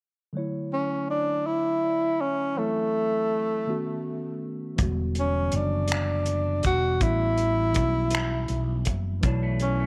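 A slow, straight 6/8 pulse at 54 BPM carries this late-night, sultry R&B fragment, which opens on a worn, slightly out-of-tune tine electric piano with light overdrive, soon joined up front by a breathy tenor saxophone singing the melody in jazz style with light vibrato, scooped notes and a smooth top, over harmony moving from Dmaj9 through F#m7b5 and B7. At 4.8 seconds a round, dark fretless bass and a cloth-damped, thuddy drum kit of finger snaps, hi-hat and tight kick arrive on Em9, the drums gritty and saturated with a rolled-off top, as the harmony continues to A13. A clean, picked semi-hollow guitar slips in at 9.2 seconds on Bm11, and the whole band sits inside a moderate plate reverb.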